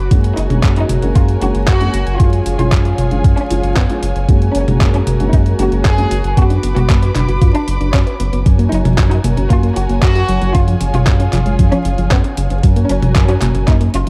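Italo disco with a playful, sunny mood, this short excerpt is driven by a thumpy, overdriven electronic kick and a detuned 8-bit drum machine of handclaps, hi-hat and toms, both re-recorded in a large room, under a deep, round analog bass sitting up front. A smooth, dark chamber string section holds sustained chords while a biting, earthy violin section carries the melody with delay, and a mellow, boxy baby grand adds stabs until 6.1 seconds, when a gentle, soft pluck takes over with chorus-and-delay arpeggios from 6.4 seconds. The production is dusky, with light reverb and a bed of vinyl crackle.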